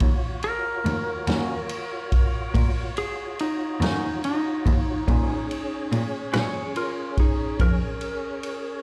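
Mournful and brooding, this slow 12/8 blues at 48 BPM, cut from a longer live club performance heard through the venue's PA with club reverb, sets a twangy, compressed lap steel slide melody with slapback echo up front over a veiled bowed cello bass, a vintage drum kit with punchy kick, snare and ride, slowly rotating tonewheel organ chords with key click, and a slightly broken-up, lo-fi guitar with tremolo that accompanies from 1.3 to 6.6 seconds, moving from Ebm7 to Bbm7 at 5.1 seconds.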